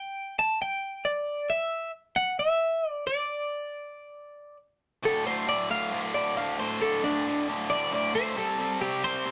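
A twangy, compressed twelve-string electric guitar opens this anthemic, cathartic rock excerpt with a clean, picked melody shimmering through harmonic tremolo over a half-time feel, until a double-tracked, high-gain distorted guitar riff enters at 5.0 seconds beneath the bright lead, all caught in a rough rehearsal-room recording with a small room's reverb.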